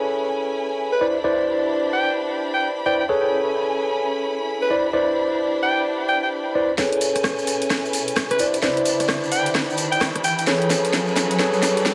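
Soulful and bouncy, this excerpt of two-step UK garage rides a swung 4/4 groove, bathed in spring reverb, heavy echo and vinyl crackle. From the opening, a lush bowed violin section holds sustained chords with sidechain pumping, while a clean tine electric piano sits up front with filtered stabs and analog delay as the harmony shifts between Amaj9 and Cmaj9. At 0.9 seconds a breathy, raspy alto saxophone takes the solo melody in a pop style, its vibrato and scooped notes trailing into delay. At 6.8 seconds the build-up begins. A layered garage kit arrives up front with a cracking snare, hi-hat and rim click, backed by a tight electronic kick in the background and grainy, distant maracas, while a drum fill plays and a filter sweep runs over the electric piano. An electronic riser joins at 8.1 seconds and carries the passage to its close.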